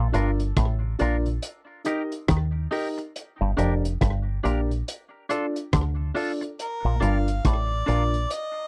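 Roots reggae at 70 BPM in Bb major, this sunny, laid-back passage cut from a longer piece moves in 4/4 with a gentle swing on the sixteenths, cycling through Bb, Eb, Gm and Dm before returning to Bb. A deep dub fingered electric bass sits up front, round and foam-muted, while a crunchy breakbeat drum kit of hi-hat, tight kick and rim click sounds gritty and saturated, its top rolled off and a slapback echo trailing it. A dark upright piano adds woody, natural stabs, and an auto-wah clav plays a hollow, nasal riff through a combo amp. A clean electric guitar supplies twangy, compressed, picked accompaniment treated with dub echo. At 6.6 s a mellow harmonica enters with a distant, roomy melody that carries its own dub echo, all captured in a dry, close 1970s-style studio sound.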